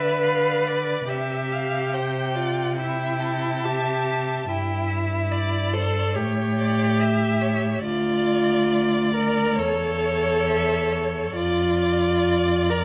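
Loose rubato pulls at the uneven beats of a slow 4/4 at about 70 BPM, in this melancholic, yearning excerpt from a romantic string quartet movement that settles into D minor from 4.5 s. Two distant, rich-toned violins share the upper register, the first singing an expressive melody with vibrato and portamento while the second spins a smooth, even line. Up front, a warm viola fills in the accompaniment and a cello anchors the bass, both bowed smoothly inside a moderate recital hall reverb.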